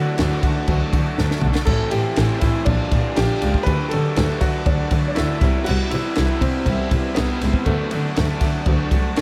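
A dreamy, reverb-soaked haze hangs over this restless, cool indie rock excerpt at 120 BPM, where a bright, woody upright piano carries the melody through diffuse ambient delay above a bowed, expressive double bass with a soft attack and portamento, a very quiet lush string machine holds sustained chords, two background guitars play riffs (one slightly broken-up and lo-fi through a small old amp with phaser, the other raw and overdriven with lush chorus), and a dry, punchy cocktail drum kit with dark cymbals and a high-tuned snare enters at 0.2 seconds and plays a fill at 1.2 seconds over chords moving from D through Am, Bb6 and Cmaj7.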